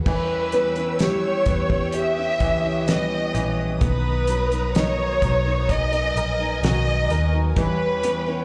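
Heard through a venue's PA with club ambience and a light, small-room reverb, this short section of a heartfelt, hopeful pop ballad moves at a slow 64 BPM in a straight 4/4. A bright upright piano, woody and slightly detuned, carries the accompaniment, while a picked steel-string acoustic guitar plays arpeggios in the background, its finger squeak audible. A dark, foam-muted fingered electric bass gives a round, punchy low end, and a damped 70s drum kit with a fat snare, tight kick, hi-hat and crash sounds dry with a rolled-off top. Up front, a lush violin section sings the melody with expressive vibrato and a slapback echo, backed by a smooth-topped string section holding sustained chords. The harmony rests on Em6, shifts to Bmaj7 at 3.8 seconds and returns to Em6 at 7.6 seconds.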